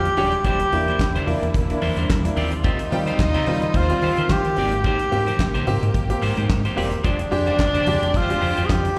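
Disco with a sultry, danceable swing, heard as a short cut from a live gig through the venue's PA, where an up-front tenor saxophone carries a vibrato-laden jazz melody with slapback echo over a dry, fat-snared 70s drum kit with handclaps, an envelope-filtered fingered bass, a twangy, slightly broken-up electric guitar, a short-sustained baby grand piano, very quiet soft-handed low congas and a hushed, rich studio string section holding chords, while a lush, distant symphonic string section adds a second line from 2.9 seconds.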